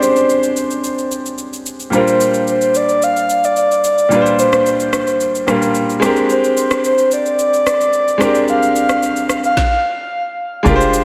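A breathy, flute-like synth lead carries the melody with chorus and tape echo from the start, over a clear, boxy grand piano and a smooth R&B kit of knocking kick, woody snare, rim click and shaker, moving between Bb13 and Gm7/Bb in a soulful, late-night amapiano groove. The dreamy mix is soaked in lush hall reverb. After a stop at 9.6 seconds, a hollow, bouncy log drum bass enters at 10.7 seconds as this cut from a longer piece closes.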